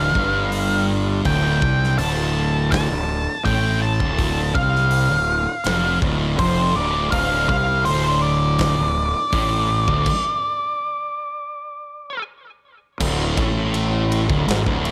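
Hypnotic and brooding, this stoner and doom metal piece, cut from a longer track, sets a dark, distorted octave-fuzz lead guitar with tape echo up front over two thick fuzz guitars playing a low riff in the background, a growly, bright fuzz fingered electric bass and a big rock drum kit with a punchy kick and rolled-off top in a big-room sound, with light reverb, a stop from 10.1 to 13.0 seconds and the lead ending at 12.2 seconds.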